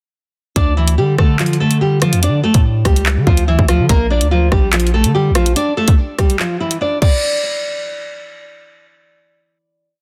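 This short, cold and menacing drill track opens at 0.6 seconds with a fingerpicked nylon-string guitar, a deep 808-style bass and an electronic drill kit arriving together at 144 BPM in a half-time feel, in D harmonic minor. The up-front guitar plays a looping melody doubled in octaves and repeated like a sampled loop. Its full-bodied classical tone is shaded by a low-pass filter and trailed by a digital delay over chords moving from Dm to Bb. Beneath it, long sine sub-bass notes with a fast attack follow the kick and bend through pitch slides, mellow and decaying. The produced kit sits up front with a hard-clipped kick, bright skipping hi-hats with fast rolls, handclaps, rim clicks and a crash cymbal, carrying a tape-warm colour. The kick drops out at 6.4 seconds, and once the drums stop, the guitar rings on alone into the final hit until 8.4 seconds, in a dense, heavily limited and dry master.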